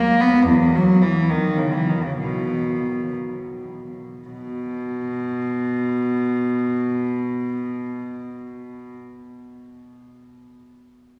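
This is a classical, baroque-style suite movement for solo cello, a short passage cut from a longer piece, with a flowing, radiant mood. A single bowed cello carries everything from 0.0 to 9.0 seconds, ranging from E2 up to B3 in 6/8 with a free, rubato feel. Its gut-string, period-style tone is rich and reedy, captured close and placed up front. The opening phrase slows down through its first 4.3 seconds before a second phrase takes over. A wet, cathedral-like reverb gives the instrument a long, glowing tail that fills the church or concert-hall space around it.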